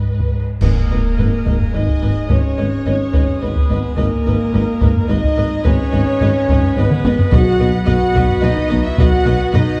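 Hard-stick taiko ensemble drums drive this majestic, heroic cinematic orchestral excerpt at 108 BPM in 3/4, where a bright clash of cymbals and concert bass drum at 0.6 s brings in mellow French horn chords, a brilliant full pipe organ, dark tuba and double basses under a woody cello bass, with lush, distant violins carrying the melody and a quieter second line, while expressive violas, an airy silver flute and round soft-mallet timpani at 7.3 s fill out a dark G#m harmony that turns to B on a moderate scoring-stage reverb.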